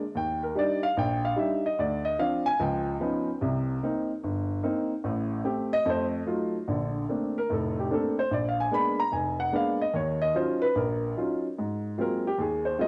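A warm, natural baby grand piano sits up front and plays alone through this short, swinging and playful jazz excerpt, its cassette-tape-tinged sound moving through rich chords such as Ebmaj7, C#9 and F7b9 across two matching passages that turn over at 6.7 seconds, captured as a home recording in a small room with light reverb.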